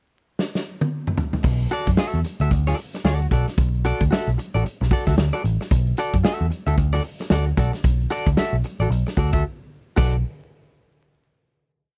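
Funk with a driving, hypnotic feel and a sixteenth-note swing, opening on a drum fill during the pickup bar before a raw garage kit settles into a syncopated groove with ghost notes, its punchy kick and gritty, saturated sound set up front with a rolled-off top. At 1.4 seconds a foam-muted picked bass enters with a round, dark, syncopated riff anchored on the downbeat, and at 1.7 seconds a clean, compressed guitar drenched in lush chorus joins with fingered sixteenth-note funk rhythm and muted scratches over a single Bm7 chord. After a brief break at 9.4 seconds, the piece closes on a final chord in a dry, close 1970s-style studio sound flecked with vinyl crackle.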